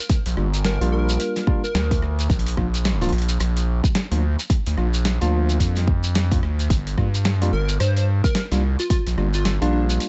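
The gritty driven synth bass stands out most, an aggressive, saturated line sitting up front between G1 and G2, its resonant filter pluck giving each note a snarling edge. This is a playful, grimy glitch hop cut from a longer piece, moving at 109 BPM in 4/4 with a 60% swing on the sixteenths, in G minor pentatonic with tuning at A4 = 445 Hz. A punchy, layered electronic kick hits up front until 9.0 s, while a pitched-down, overdriven sampler-style kit supplies compressed hi-hat, rim click and a medium-tuned snare, and a grainy, close and dry shekere adds mellow acoustic texture underneath. A worn, slightly out-of-tune tine electric piano plays stabs through a combo amp, pumping against the sidechain and trailing delay as the chords move from Gm7 to Bb at 2.3 s and back to Gm7 at 6.7 s. A bright, detuned unison lead with a catchy hook and a noise layer appears from 0.7 to 2.2 s and returns at 7.5 s, its echoes set in a digital ambience that rolls off above 8.0 kHz.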